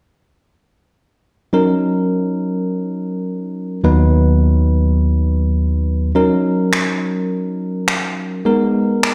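A bell-like tine electric piano carries this short dance-pop clip, entering at 1.5 seconds with a bright, clean and direct tone that sits up front while it plays accompaniment across a range from D#2 to B4. The mood is driving yet bittersweet, moving at 104 BPM in a straight 4/4 with tuning set to A4 = 436 Hz. The harmony passes through D#m7, B/D#, F#6 and G#madd9 within a single section cut from a longer piece. At 6.7 seconds, produced electronic finger snaps join as the drum part; they carry a tape-tinged character, have been re-recorded in a large room, and also sit up front. The overall sound comes through a moderate echo chamber reverb with an RT60 of 1.2 s, and it is heard as if played on a big sound system in a bare stone room, with both parts continuing to 9.1 seconds.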